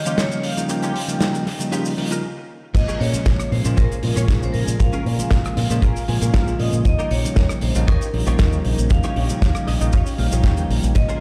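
A sensual, groovy nu-disco excerpt at 117 BPM opens on a ringing, metallic vibraphone melody played with hard mallets over a lush, detuned sawtooth pad with chorus, phaser and sidechain pumping. A bell-like tine electric piano, a clean, compressed guitar riff with a filter sweep, and a damped, airy 70s kit of dark cymbals, rim clicks and cabasa join almost at once, building over Eb9 until a brief stop at 2.2 seconds. At 2.7 seconds the drop arrives as a tight, up-front kick and an envelope-filtered fingered bass enter, the harmony moving to Bbm7 and back to Eb9 while the guitar adds fills, set in a large studio reverb that sounds like a big sound system in a bare room.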